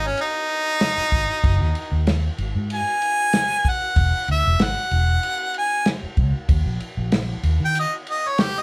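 Straight-eighth soul blues at 95 BPM in 4/4, with a light 16th-note swing and a mournful, soulful mood, heard as a short cut from a longer piece. A clear, punchy harmonica carries the melody as a solo from start to finish, close-miked and up front, with light vibrato and a touch of overdrive, ranging from C#4 up to G#5. Beneath it, a vintage electric bass played with the fingers gives a dark, round, foam-muted tone through an amp and drops out at 7.8 seconds. The drum kit enters at 0.2 seconds with kick, snare and ride cymbal, sounding dry and smooth with dark cymbals, a medium-tuned snare, a tight kick and a rolled-off top. The three players share one room with light reverb, giving the performance a close, live feel.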